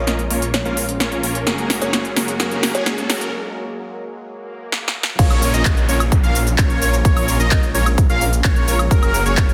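A buzzing, woody kalimba melody with digital delay and a lush, chorused background pad open this powerful, emotional festival progressive house excerpt in Bb minor at 129 BPM, alongside huge, bright supersaw chords under a low-pass filter and a thick, menacing detuned saw bass, with the pad, chords and bass all pumping to the sidechain, while a big-room drum kit with a soft-clipped punchy snare, crisp hats, handclaps, shaker, woodblock and crash drives a filter-swept build through drum fills, a break at 3.3 s and very quiet riser, swell and downlifter effects, until the drop at 5.2 s brings in an up-front electronic kick and a bold, wave-folded unison lead playing delayed, pumping arpeggios over a dense, heavily limited master.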